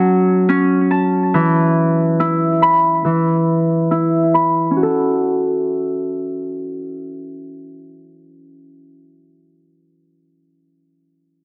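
A bright, ringing Celtic harp sits up front, fingerpicking arpeggios through the whole 9.1-second excerpt, its tone softened by a low-pass filter and trailed by tape echo. This dark, tense hip hop cut in F# minor moves at 140 BPM with a half-time feel, shifting from F#m to E5 and returning to F#m as a new section begins at 4.8 seconds, after a filter sweep covers the opening. Moderate digital room reverb surrounds the harp, and the dense, heavily limited modern master is also rounded off by a low-pass filter.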